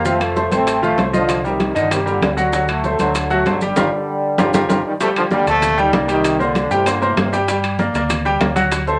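A tight, punchy trombone section carries the melody up front, its bright tone touched with light vibrato and a smooth top, before it drops out at 7.4 seconds. This is a fiery, driving salsa in G minor at 194 BPM, cut from a longer piece, with a clear baby grand piano sitting just as present in the accompaniment; its worn, intimate sound has short sustain and audible action noise. A dark, round, amped fingered electric bass holds the low end beneath them. The percussion sits further back: thick-skinned, damped congas, low-tuned bongos struck with hard hands, and grainy maracas, while ringing metal-shell timbales carry a live-room sound. Around 3.8 to 5.0 seconds a drum fill and band accent mark the turn as the chords move toward Gm7, with the whole ensemble bathed in a wet club reverb.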